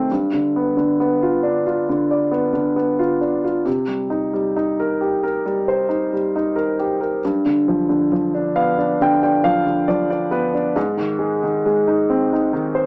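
A folk instrumental in a melancholic, reflective mood, this short excerpt moves at an unhurried 68 BPM in a straight 4/4. A solo concert grand piano carries the whole 12.9 seconds, ranging from G2 up to G5, with deep bass and an intimate, up-front presence. The piano's natural tone lets its audible action noise come through, adding a close, human texture to the playing. The harmony drifts from G7 to Cm7, returns to G7, and settles on Ab near 10.8 seconds, leaving the phrase feeling unresolved. A moderate studio reverb gives the sound a modest sense of space, while the overall recording has the slightly boxed character of a small speaker.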